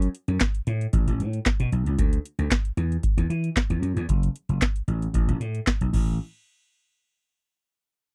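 Early-eighties boogie funk with a feel-good, smooth mood, built on a booming analog drum machine with a deep kick, crisp snare, metallic hats, handclaps and crash cymbal, playing from the start alongside an up-front, bright, growly, punchy vintage slap bass, both stopping near 6 seconds in a dry, close studio sound.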